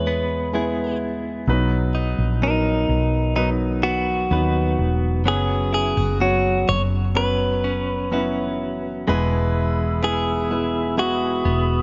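Emotional and hopeful, this slow pop fragment at 63 BPM in 4/4 has a clean, picked electric guitar carrying the melody over an intimate concert grand piano, whose audible action noise and short sustain sit close up, while a twangy second clean guitar plays tremolo-treated arpeggios and a growly, round fretless bass anchors the low end. The harmony moves from E through B and F#sus4 before returning to E at 9.1 s, where a mellow, distant flute group enters with pure sustained chords tinged with vibrato. A light studio reverb and a softened top end give the mix a polished, gentle sheen.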